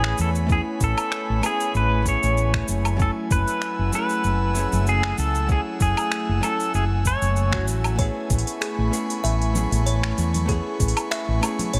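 Light reverb and a touch of 12-bit sampler grit on the pad give this smooth sunset chillout excerpt a hazy glow, moving at 96 BPM with a gentle 16th-note swing in A major over Amaj9 and F#m9 chords. An up-front, twangy pedal steel carries the melody with slide and volume swells until 7.6 s, while a dark, clean hollow-body jazz guitar plays delayed accompaniment, an airy, breathy pad holds detuned chords, and a growly, round fretless bass anchors the low end beneath a soft electronic kick and a tape-warm R&B kit of cabasa, finger snaps, metallic hi-hat and woodblock. At 8.0 s a buzzing kalimba enters in the background with bright, delayed arpeggios, joined by soft-handed congas at 9.6 s.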